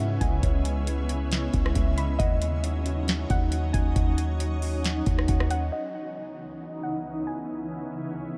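A half-time 4/4 groove at 136 BPM drives this ethereal, melancholic cloud-rap excerpt in C# minor, where a booming analog drum machine with a deep kick, tonal snare, metallic hats and rim clicks sits up front beside a boomy, sine-like 808-style bass, while muted felt-like synth keys trace dark, intimate arpeggios in the background, a soft round pluck carries a gentle, nasal melody through chorus and tape echo, and a shimmering, detuned ambient pad with octave-up sparkle, granular texture and sidechain pumping holds C#m9 and D#m7 chords in light reverb, lingering alone with the pluck after the drums drop out at 5.6 seconds and the bass and keys stop at 5.7 seconds.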